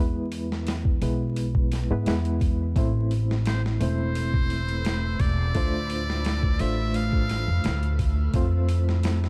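A dark, crackling vinyl haze wraps this cinematic, smoky trip hop excerpt in A harmonic minor at 86 BPM, where a gritty, pitched-down boom bap kit with a thumpy kick and high-tuned snare sits up front beside a woody pizzicato upright bass. A barky, reedy electric piano with medium tremolo carries the accompaniment over chords moving from E through Amadd9 and Dm7 to F. Soft sawtooth string-machine cellos with ensemble chorus fill in behind from 2.8 seconds, and a buzzy, brilliant metal-muted trumpet plays a jazz-style solo line with tape echo from 3.5 to 8.0 seconds, while a very quiet, breathy wind-like noise layer drifts in at 3.8 seconds.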